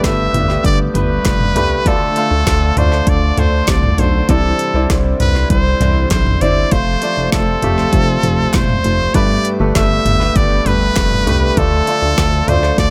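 A straight 4/4 deep house drum kit with a deep kick and woody snare drives this hopeful, anthemic piano-driven pop excerpt, where a brilliant, up-front trumpet carries the melody with vibrato and scooped notes over clear grand piano accompaniment, a glossy chorused synth bass, a bright direct-recorded clean guitar riff with lush chorus sitting in the background, a very quiet, distant woodwind section holding dark sustained chords, and faint hollow group handclaps that stop at 12.3 seconds, all with little reverb.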